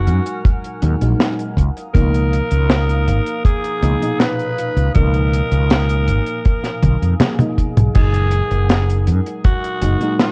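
A straight 4/4 pulse at 80 BPM anchors this dreamy, faded vaporwave fragment in F# major, where a raspy, edgy alto saxophone with tape echo carries the melody over a soft FM electric piano treated with phaser and subtle chorus, a nostalgic, detuned tape-like pad with 12-bit sampler grit, a round, dark fretless bass sitting up front, a dry, tight kick and a deep reggae kit with a high-tuned snare and a fill from 6.8 to 8.0 seconds, the whole mix steeped in worn cassette pitch drift as the chords move from F#69 to C#13 and back at 8.0 seconds.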